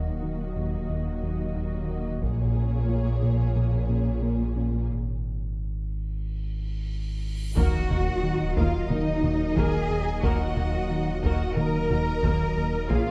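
A dark, softly reverberant production opens this tense, relentless cut from a longer hybrid orchestral and electronic film score, moving at 90 BPM in 4/4 in Eb minor. A bowed string ensemble carries the harmony from Ebm to Bbm7: background violins with a shadowy, woody tone hold the melody while a second, smooth violin line, lush violas and expressive cellos fill out the middle, and very quiet double basses anchor the bottom. Beneath them sit a slow-attack detuned analog pad with chorus, a crystalline wavetable pluck spinning very quiet arpeggios through a filter sweep, a mellow sawtooth synth bass riff and a deep, full sub bass. Taiko drums struck with hard sticks come in at 2.2 s, and after a break from 4.9 s a huge, bright cymbal swell and sub drop lead into an impact at 7.6 s. From that point the taiko return and very quiet, soft-attack French horns and tight, present trombones add sustained chords as the harmony settles back on Ebm.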